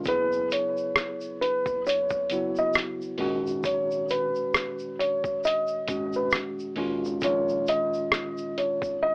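A felt-muted upright piano carries the melody up front, soft and intimate with audible action noise, over a worn, slightly out-of-tune tine electric piano that moves through Gb, Abm7 and Bbm7 in this hazy, reflective lo-fi hip hop excerpt at 67 BPM with a swung 16th feel. A compressed, pitched-down sampler-style drum kit with a thumpy kick, hi-hat and rim click sits up front, while a round analog bass stays deep in the background and a grainy, bright tube shaker adds texture. Light reverb and an AM radio tone color the mix.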